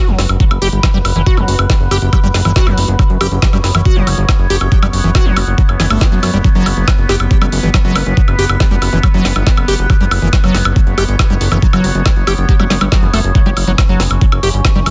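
Intense and psychedelic, this trance passage, cut from a longer piece, is driven by an up-front, overdriven knocking kick and a fat, detuned sawtooth analog bass with tube saturation, while a squelchy, resonant acid bass riff with chorus and tape echo and a nasal drone of sustained chords with moving overtones and built-in reverb both pump from sidechaining, over an overdriven electronic kit of woody snare, bright hi-hats and woodblock, in a dense, heavily limited master with little room reverb.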